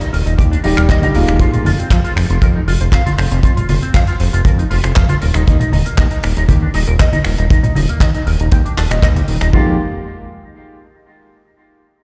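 Heard as if played through a big sound system in a bare room with large studio reverb, this sensual, sleek nu-disco excerpt at 118 BPM rides a fat, detuned sawtooth analog bass up front and a tight, dry kick, while a damped 70s drum kit of finger snaps, handclaps and hi-hat, compressed congas played with soft hands, and a clean, picked electric guitar riff treated with an envelope filter, filter sweep, chorus, tape echo and 12-bit sampler grit sit behind, and a clear concert grand piano with long sustain and sidechain pumping enters over the opening Ebmaj9 at 0.6 seconds and returns briefly at 9.5 seconds.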